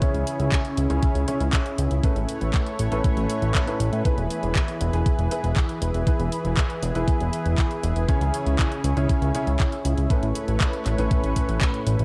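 A steady, straight pulse drives this playful, romantic italo disco fragment, anchored by a thumpy, sampler-style electronic kick that sits up front with a tape-like roundness and the air of a large room. Over it, a house drum kit adds layered handclaps and bright, overdriven hi-hats, while a fat analog bass enters at 0.1 seconds with a detuned, nasal sawtooth-and-square tone, saturated and plucky in its filter yet sustained beneath the groove. A bright grand piano plays stabs through a gritty vintage 12-bit sampler character, softened by a low-pass filter and trailed by a diffuse ambient delay. Behind it all, a lush unison pad holds sustained chords with slow attack, long release, detuned sawtooth thickness, a ring-modulated edge and a shimmering chorus. The harmony moves from C#m through Aadd9 to a long stretch on E before returning to C#m and Aadd9, and the mix is dreamy and soaked in plate reverb for the full 12 seconds of this cut from a longer piece.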